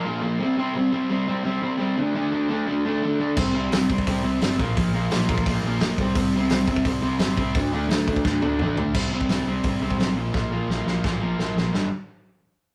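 This rough rehearsal-room recording sits in a small room with a moderate, half-second reverb, giving this short cut from a longer punk rock piece an upbeat, rowdy energy. An overdriven, double-tracked electric guitar opens alone and up front, picking a riff over power chords that move through C5, D5 and Bb5, tuned slightly below standard pitch at A4 = 438 Hz. At 3.4 seconds a bright, growly picked bass and a loose indie drum kit come in together. The drums are mid-forward and saturated, with a punchy kick, a medium-tuned snare, hi-hat, crash and toms, and their top end rolled off. The band drives at 172 BPM in a straight 4/4, with drum fills at 8.2 and 10.3 seconds leading into new sections before the chords land on G5 as the cut ends.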